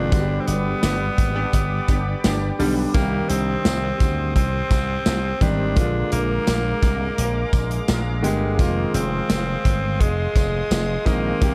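A straight 4/4 groove from a modern studio drum kit drives this moody, dramatic 1980s-style pop passage, its punchy kick, medium-tuned snare and hi-hat sounding in a pumping room, with a jingly tambourine tucked in the background. A glassy, bright slap bass with a direct, punchy tone anchors the low end, while a clear concert grand piano with deep lows and short sustain supplies polished accompaniment over a G, Cm, Bb7, Fm7 progression. Out front, a raspy tenor saxophone carries the melody with a gritty, forceful edge, light vibrato and a smooth top. Behind it, an evolving sawtooth pad with a resonant filter swell and chorus holds sustained chords, and a funky, detuned, wave-folded polysynth adds stabs from 0.8 to 2.7 seconds during a band accent at the opening. The dark production carries light reverb, and the passage is cut from a longer piece.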